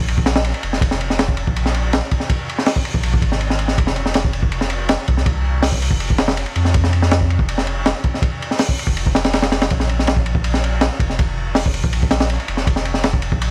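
Drum and bass with a jungle edge, this 13.5-second cut from a longer piece runs at 162 BPM in a straight 4/4, feeling both atmospheric and frenetic. A crunchy breakbeat kit of hi-hat, kick, ride and snare sits up front with a gritty, saturated character, dark cymbals, a high-tuned snare, a punchy kick and a rolled-off top, as if caught in a small room. Beneath it from the start, a deep, thick saturated sub bass with a fast attack sustains between F1 and F2, and the dry mix carries a layer of vinyl crackle.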